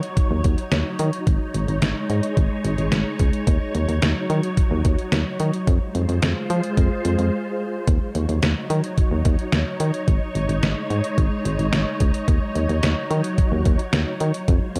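A detuned 8-bit drum machine sits up front with a thumpy kick, a medium-tuned snare and hi-hat, its tape-tinged, sampler-style hits carrying a small-room grit, and a brief break arrives from 7.3 to 7.9 seconds. From 0.3 seconds a punchy, round FM bass with a fast, decaying attack pushes this melancholic yet driving synth-pop excerpt forward, while a silky, warbling string machine with ensemble chorus holds soft, slow-blooming chords beneath them over Ebm7, Absus4 and Fm. A lush hall reverb gives the dark production a sense of depth.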